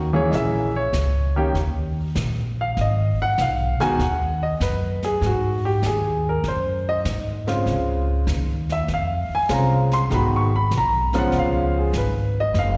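An intimate grand piano sits up front and carries the melody across a broad span of the keyboard, its natural tone touched by a slapback echo and the faint sound of the instrument's action. This is a relaxed, playful jazz piano trio passage in a swung 4/4, taken from a longer piece and heard as a live gig through the venue's sound system, with recital hall reverb and a light small-room ambience around it. A woody pizzicato upright bass with steel strings shares the front of the mix, playing low from the very start alongside the piano. A jazz kit played with brushes joins at 0.3 seconds, sitting further back, its medium-tuned snare, hi-hat and boomy kick carrying their own slapback echo. The harmony moves through chords such as Bbm7b5, Abm7, Ab7 and Dbmaj7 before landing on Db7 near the end.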